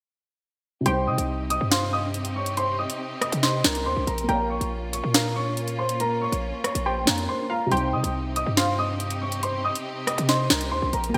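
An overdriven drill kit leads this dark, ominous hip hop excerpt, its sharp snare, rim clicks and bright hi-hats sitting up front in a half-time feel and washed in gated reverb. Beneath it, a punchy 808-style bass hits hard with a fast attack and decaying tail, its sine tone roughened by a noise layer. A mellow concert grand carries the melody with a boxy, deep-bassed tone and subtle chorus, while a felt-muted upright piano plays soft, short-sustained accompaniment in the background, entering just before the rest at 0.8 s. A warbling, lo-fi pluck with a detuned, sub-octave character and digital delay adds a second line, and a distant bowed string section holds lush sustained chords with vibrato. The harmony moves from C minor to B-flat minor and back, with a brief break around 7.3 s, all set in a moderate hall reverb with a bright 1980s-style digital sheen.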